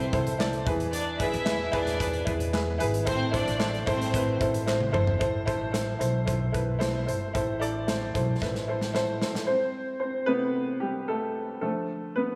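A straight 4/4 pulse at 112 BPM drives this earnest, dramatic piano-driven pop excerpt, where a clear, slightly detuned upright piano with slapback echo sits up front over thumpy pizzicato upright bass, a tight-kicked acoustic drum kit with fills, very quiet crisp group handclaps and a reedy bowed violin section with light vibrato that drops out at 4.4 seconds, set in a lush hall reverb with a big arena feel, before the piano plays alone from 9.5 seconds as the harmony moves through Amadd9 to Dm.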